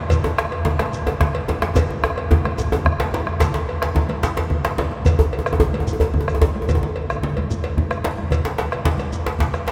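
Awash in the long, cavernous reverb of a church or concert hall, this short cut from a longer West African traditional piece sounds powerful and driving, its drum ensemble rolling in a straight 12/8 feel. A round, close bombo sounds alongside a tight, cracking djembe with metal rattles that sits up front. A second djembe, medium-tuned and played with hard hands, stays in the background alongside a metallic cowbell. Thick-skinned, damped congas add a compressed, saturated body under soft hands, and a grainy shekere whispers very quietly close by. A drum fill arrives at 1.8 s, leading into a new section at 3.4 s, and another fill closes the passage at 9.3 s.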